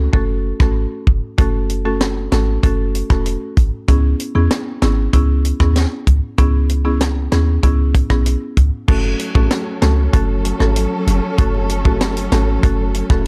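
A straight, bouncy dancehall groove in 4/4 is set by a tight funk drum kit sitting up front, its high-tuned snare, tight kick, rim clicks, hi-hat and crash cymbal sounding acoustic and mid-forward with a rolled-off top. Beneath it, a clean 808-style bass delivers deep, boomy sine tones with a fast attack and decaying tail, while a buzzing marimba played with medium mallets supplies woody, dry accompaniment from hardwood bars. The mood is sultry, and the harmony moves from F# minor to C#m7 before returning to F# minor. At 8.9 seconds a studio string section enters with bowed, sustained chords, expressive vibrato and portamento over a smooth top, its ensemble sound pulsing with sidechain pumping. Very quiet, high-tuned bongos join at 9.0 seconds, sounding distant as if in a large room. The whole piece carries a dark, warm production with small room ambience, cut from a longer piece.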